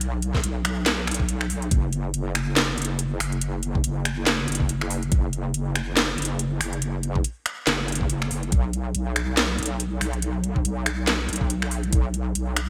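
A heavy, saturated wobble bass with a resonant, detuned square-and-sine tone sits up front from the start, its chorus and tube saturation thickening the low end of this dark, cavernous deep dubstep excerpt at 141 BPM, felt in half-time with a swung 16th-note groove. A garage drum kit of finger snaps, metallic hats and a cracking snare runs throughout under gated reverb, while a knocking, tape-warm electronic kick enters at 0.3 seconds and drops out at 12.0 seconds. The production is bright and 1980s-style digital, with light reverb in the room.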